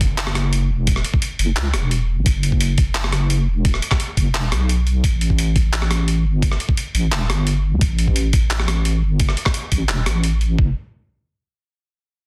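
A half-time drum and bass groove at 173 BPM in 4/4 drives this heavy, spacious piece in F# phrygian, built on a thumpy electronic kick and a gritty boom bap sampler-style kit of handclaps, hi-hat and rim click with soft clipping on the snare, both compressed and re-recorded in a large room. Up front sits a deep, dark wobble bass made of detuned square and sine tones, saturated through tube warmth and thickened with chorus, while a very quiet electronic impact opens the first 0.9 seconds. The mix is dry and densely limited, and the parts stop by 10.7 seconds, shortly before this section of a longer piece cuts off at 12.0 seconds.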